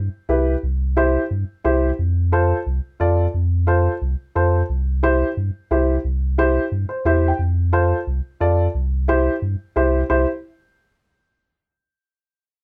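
The recording has a dusky, lightly reverberant sound, with both instruments placed up front. This is a festive, sunny cumbia in C major, moving at a brisk 177 BPM in a straight 4/4. A pure sine sub bass begins at 0.0 seconds, deep, clean and smooth, with a fast attack and sustained notes between C2 and G2. An upright piano joins at 0.3 seconds with a mellow, woody tone that is slightly detuned and rings with long sustain. The piano adds short fills around 1.5 and 6.7 seconds, over a simple harmony that alternates between C and F. The music is cut from a longer piece.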